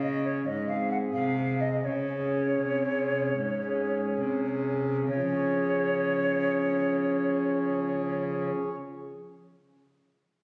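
In a flowing 12/8 at 65-91 BPM counted in dotted quarters, this serene baroque-style sonata movement in Db major slows down across its opening 5.1 seconds before a second section begins, the harmony settling from Ab onto Db. An airy, hollow concert flute with vibrato and a crisp attack carries the melody close and up front, while a smooth principal-stop pipe organ with baroque voicing and a touch of chiff supplies the accompaniment, and a single distant cellist with reedy, nasal gut-string tone and light vibrato bows the bass. Captured on a phone in the room, this cut from a longer piece sits in wet concert hall reverb with added club reverb and compression.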